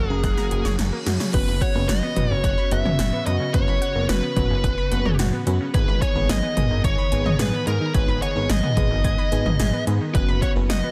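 An upbeat, nostalgic synth-pop excerpt opens with a distorted, picked electric lead guitar melody over shimmering string-machine violins, a warbling analog pluck arpeggio, a glossy, nasal chorused synth bass and a lush, dreamy FM electric piano with a soft pad layer, while punchy, overdriven 80s electronic pad drums with gated snare and toms, metallic hats, cowbell and crash play a fill from 0.2 seconds as a quiet reverse cymbal sweeps in beneath them at 0.6 seconds, all set in light digital ambience with a dense, heavily limited modern master.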